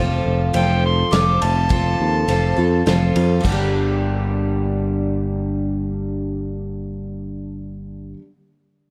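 A straight 3/4 pulse at 103 BPM carries this wistful, dusty stretch of folk and heartland rock in G minor, cut from a longer piece, where a shimmering, octave-doubled twelve-string acoustic guitar and a round, up-front electric bass hold down the accompaniment, moving from F to G minor at 3.4 seconds. A small-room country drum kit with dark cymbals and a punchy kick plays from 0.5 to 3.6 seconds, while an amplified, overdriven harmonica takes a gritty solo lead with light vibrato, tongue slaps and tape echo from 0.6 to 3.1 seconds. The production is dark and warm, with light reverb and a small room ambience.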